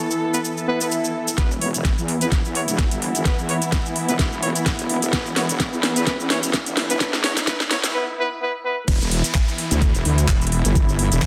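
A dense, heavily limited modern master in a moderate digital room carries this swaggering, aggressive bass house excerpt in 4/4, swung 55% on the 16ths, as con sordino chamber strings hold veiled, bowed chords through a low-pass filter and a nostalgic, lo-fi square-and-triangle pad warbles with chorus in the background until 7.9 seconds. A tape-warm garage kit with a soft-clipped, cracking snare, metallic hats, handclaps, shaker and crash sits up front. Clear pop-style horn stabs with light vibrato and tape echo pump against the sidechain alongside the strings, pad and bass, while very quiet swells, risers and downlifters add electronic effects. At 1.4 seconds a knocking layered kick and a heavy, saturated, detuned sawtooth-and-sine wobble bass with chorus and overdrive arrive, driving a build-up with a filter sweep and a brief break into the drop at 8.9 seconds.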